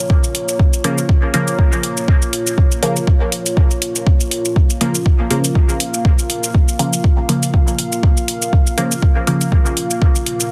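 Dub techno at 121 BPM in 4/4 with a light swing on the sixteenths, this short excerpt sits on a single Bb minor chord and carries a hazy, deep mood. A dark analog pad holds sustained chords throughout, its sawtooth and triangle tones thickened by a sub octave, a slow attack, chorus and phaser, all pulled into a breathing motion by sidechain pumping. Beneath it, a muted, detuned filtered chord stab plucks out short, decaying hits with a fast attack, its evolving sound treated with chorus, phaser and pumping and joined by a trailing dub echo. The electronic kick drum arrives at 0.1 seconds, deep, layered and tape-warm, standing up front as the loudest element. Metallic shaker and hi-hat patterns enter at 0.2 seconds, also up front with a touch of small room ambience, over a dense, heavily limited master that leaves the mix dry and close.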